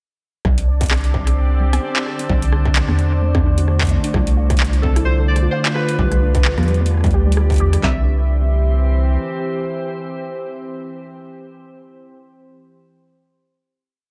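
A swung, broken groove from a distorted industrial kick-and-clap kit and a glitchy electro analog drum machine of metallic hats, rim clicks and claps drives this playful IDM piece, with a rubbery, up-front square bass gliding underneath. A glassy FM pad holds ethereal, slowly shifting chords, while a bubbling stepped-filter texture and a dusty pluck running a 14-step loop that drifts against the bar sit in the background, the pluck sweeping its filter. Warbly lo-fi synth keys enter at 4.8 seconds with nostalgic arching motifs colored by phaser, tremolo and 12-bit grit, and after the groove stops at 7.8 seconds the piece settles on a final C chord.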